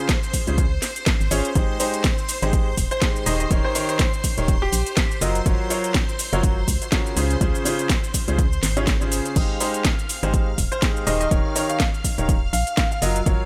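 Piano house with a euphoric, uplifting glow, built on a woody upright piano riff with tape echo and a shimmering vintage string machine of violins holding sustained chords, both pumping against the sidechain alongside a hollow, organ-like FM bass that enters at 0.5 s. A punchy, tape-warm electronic kick sits up front with a layered garage kit of cracking snare, metallic hi-hats, shaker and crash cymbal, all swung on the sixteenths. A brilliant concert grand piano adds echoed melody phrases, first at 2.9 s and again at 10.7 s, over Dbmaj7, Abmaj7, Eb7 and Gbmaj7 changes in a digital ambience.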